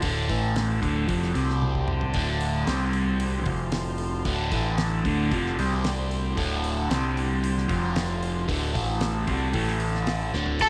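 A double-tracked, overdriven semi-hollow guitar sits up front, playing a riff colored by a phaser that moves among D, A5, C5 and F5 chords. This hazy, trippy psychedelic rock excerpt runs at 114 BPM in a straight 4/4, cut from a longer piece. Beneath it, a deep dub picked electric bass is round, dark and punchy, and a damped 70s drum kit gives a dry sound with a fat snare and tight kick, with a drum fill at 1.6 seconds. A shimmering, softly plucked tanpura drone buzzes underneath, while a vintage combo organ holds clean, buzzy sustained chords with light vibrato in the background. At 10.6 seconds, a bright overdriven slide guitar played with fingerpicks cuts in briefly on a single high note, all in a small room with light reverb.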